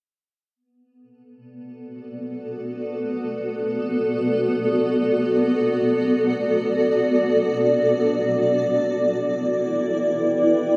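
Ambient piece in free time, peaceful and luminous, cut from a longer work. A granular cloud pad carries sustained chords from 1.8 seconds, moving from Bm7 to Em7 at 9.0 seconds, its cloudy, blurred, detuned tone built on a triangle wave with a moving notch, slow attack and long release, sitting up front with its own built-in reverb. The whole passage fades in from 0.6 seconds inside a wet echo chamber with a 2.7-second decay.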